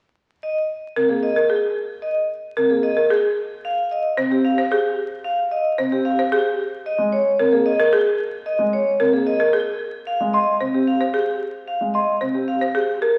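Minimalist classical pattern music in 3/4 at 112 BPM, this short cut from a longer piece sits in F minor and feels both meditative and urgent. A vibraphone played with medium hard mallets carries the melody from 0.4 seconds, its metallic, ringing tone close-miked and up front with the motor off. From 1.0 seconds a dark, boxy grand piano supplies mellow accompaniment low in its range, while a folk marimba with hard mallets spins woody, rustic arpeggios that sound bright and percussive. Near the end, at 10.3 seconds, a small celesta adds delicate, bell-like arpeggios on a single high note with a sweet touch. The harmony moves from Bbsus2 through F5 and Bb7sus2 to close on Fm, and the whole is heard through a scoring-stage reverb and the crackle of a very old 78 rpm record.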